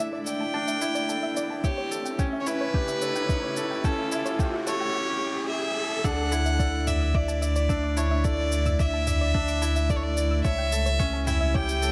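Set in light reverb and a digital ambience, this tender, luminous piano and strings electronica opens with a muted, mellow felt upright piano riff with audible action noise and digital delay, over a cloudy, evolving granular pad and a dark, nasal pluck arpeggio with chorus, cassette tape and delay, both pumping in the background. A rich, floating sul tasto violin melody sits up front alongside tape-warm electronic shaker and toms, with a soft electronic kick arriving at 1.6 s, while an electronic riser sits in the background until the drop at 6.0 s. There a deep, round sine sub bass enters up front, pumping beneath the Dsus2 and A7/C# chords.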